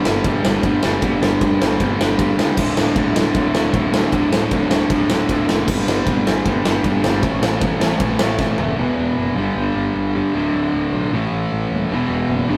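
A straight, driving 4/4 pulse powers this upbeat, rowdy punk rock clip from a longer piece, with a big acoustic rock kit of punchy kick, snare, toms, crash and bright ride cymbals up front beside a crunchy overdriven guitar riff. A tight distorted guitar adds a second riff in the background and a growly, fuzz-laden picked bass digs underneath as the chords move through G5, D5, A5 and E5. A drum fill at 8.4 seconds closes the kit's part before the band drops into half time at 8.8 seconds, all captured in a rough rehearsal-room sound with light reverb.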